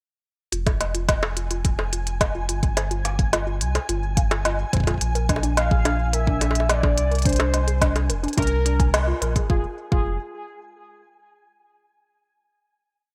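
A warbly, dusty pluck carries this melancholic, eerie IDM piece, running a nasal, lo-fi seven-step arpeggio that drifts against the bar while a filter sweep moves across it, coloured by chorus, cassette-tape wear and delay. At 107 BPM in F melodic minor, a deep kick plays a broken pattern under a glitched, ever-changing beat of woody snare, smooth closed hats and high bongos, the kit sitting up front with a tape-softened, small-room character. A round sine sub bass holds long gliding notes beneath, and a flickering, grainy granular texture sustains a single high note in the background from 1.2 seconds. A velvety synth lead with vibrato, a sub octave and chorus enters at 5.6 seconds, shaping arched motifs over the Bb7 harmony that replaced Fm at 5.0 seconds, before the band accents and settles onto a final Fm chord at 9.5 seconds. The mix has the bright sheen of 1980s digital production, with light reverb and a digital ambience.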